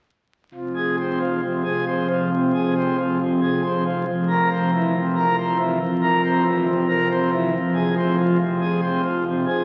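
A solo pipe organ enters at 0.5 s on a full principal chorus, placed up front with a romantic voicing, playing a grave, solemn classical chorale in F minor at a rubato 69 BPM in 4/4. The harmony moves from F minor to C7 over F and back to F minor, the organ's deep bass and upper voices blooming in a long cathedral reverb. The sound carries the crackle of a very old 78 rpm record, and this brief passage, cut from a longer piece, ends at 9.6 s.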